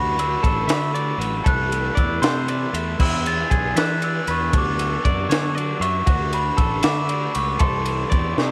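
Playful and intricate, this short math rock and midwest emo passage in D lydian moves at 78 BPM in 6/8, with a mellow, bell-like glockenspiel carrying the melody over twangy, compressed clean electric guitar arpeggios and a double-tracked crunchy overdriven guitar riff in the background, both tinted by cassette tape, while a punchy fuzz fingered bass drives from the start and an up-front, crisp fusion drum kit with a high-tuned snare and tight kick joins at 0.2 seconds, all captured as a dry home recording on cassette.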